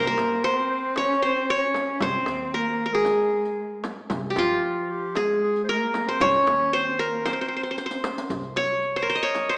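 A bright-edged qanun played with fingerpicks leads up front in this hypnotic, melancholic Arabic maqam ensemble piece in C maqam kurd at 114 BPM in 4/4, joined from the start by a clear, punchy clarinet and a dark, woody bowed cello with vibrato as second lines over a thumpy pizzicato upright bass. A small, dry frame drum, a riq with its jingles and a very quiet, distant clay darbuka supply the percussion, with a drum fill at 7.8 seconds before the clarinet and cello stop at 8.0 seconds and the qanun carries on to 9.6 seconds. A wet recital hall reverb and a small speaker sound shape this passage, cut from a longer piece.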